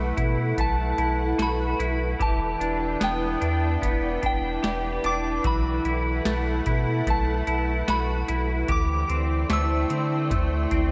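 A round, sine-toned sub bass sits up front in this ethereal, haunting dream pop excerpt, its deep notes held long over a straight 4/4 pulse at 74 BPM, with tuning set to A4 = 437 Hz. From 0.2 seconds an overdriven analog drum machine booms in with a deep kick, crisp snare and metallic hi-hats. A clean electric guitar picks bright, twangy, compressed arpeggios through ensemble chorus and analog delay, while a silky vintage string machine swells slowly into sustained, warbling chords. Above them a soft FM synth bell plays a pure, gentle melody whose notes decay into long tails, colored by chorus and analog delay. The harmony drifts from B7sus4 to Em7 and back before settling on D9sus4, and the whole mix is soaked in a lush hall reverb that lingers for about 3.1 seconds.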